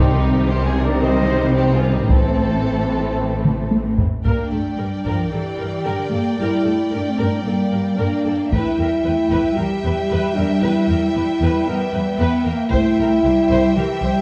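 Mellow, distant French horns hold sustained chords throughout this grim, relentless epic orchestral film-score excerpt, alongside lush bowed strings (a smooth violin melody, a focused second violin line, far-off violas, expressive cellos with portamento and rich double basses), while dark trumpet stabs and very quiet, bright trombones sound only in the opening seconds, heavy-stick taiko drums enter at 2.1 s with a fill at 3.4 s, and moderate scoring-stage reverb surrounds the ensemble.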